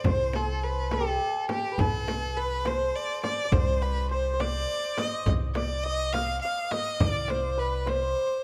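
In a straight 6/8 at 69 BPM, this stately, festive Persian modal ensemble piece in C avaz esfahan, cut from a longer piece, places a rich, smooth bowed violin melody with vibrato up front over a shimmering, ringing hammered santur line, while a woody pizzicato upright bass holds C2, a small, bright, compressed, saturated frame drum plays along, and a deep, soft-handed tombak sits close and dry in the background, all captured with close, detailed microphones and light reverb.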